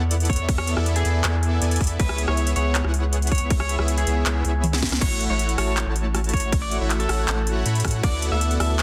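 Future bass at 159 BPM in a half-time feel, playful and bright in A major, this excerpt from a longer piece drops straight in with a smooth, detuned supersaw riff and a thick, saturated sub bass both pumping to the sidechain, joined by an overdriven trap kit with sharp snare and metallic hats, a hard-clipped electronic kick sitting up front, a clean picked electric guitar melody draped in lush chorus and tape echo, and, from 5.9 seconds, a very quiet, ethereal granular pad holding sustained chords, all over a progression from E7sus4 through C#m7 and A6 to D69 with a drum fill at 4.6 seconds and a dense, heavily limited modern master.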